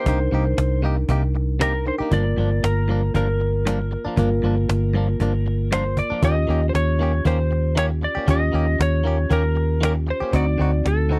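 Soul blues in G minor at 117 BPM with a soulful, smoky mood, this dry, close 1970s-style studio excerpt sets a dark, slightly broken-up slide guitar melody over mellow tine electric piano, bright twangy clean guitar stabs, a round, punchy foam-muted fingered bass sitting up front and a snappy cajon, moving through Cm7, Gm7, Eb7 and D7b9.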